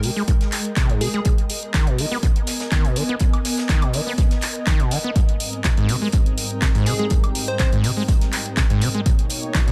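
Acid house at 123 BPM in 4/4 with a light swing on the sixteenths, this short cut from a longer piece feels trippy and raw. A squelchy, gritty acid bass riff drives it from the start, distorted and resonant with a subtle chorus, sidechain pumping and dub echo. A punchy analog drum machine supplies handclaps, hi-hat and woodblock alongside a very quiet acoustic kit of hi-hat and snare with a rolled-off top, and an up-front electronic kick joins at 0.3 seconds. A cloudy, evolving granular pad sustains throughout with its own reverb and pumping, while a bright, catchy square-wave lead with delay darts in briefly at 1.0 seconds and again near 6.9 seconds. From 5.2 seconds a warm, detuned sawtooth pad adds sustained chords with a subtle chorus as the harmony moves between Abmaj9 and Bmaj7, closing on Bmaj9, all set in a digital ambience.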